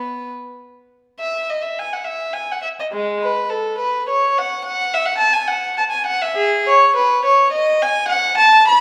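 Heard from further back in a recital hall, the recording carries a wet reverb with a 1.6-second decay around a single bowed violin. This is a flowing, dance-like classical movement in baroque suite style for unaccompanied violin, in 6/8 at 70 BPM counted in dotted quarters, with a rubato feel and tuning at A4 = 439 Hz. The violin's dark, nasal gut-string tone has a reedy, period-style character across a range from G#3 to B5, and a brief opening phrase gives way at 1.2 seconds to a longer passage that runs until the cut at 8.8 seconds.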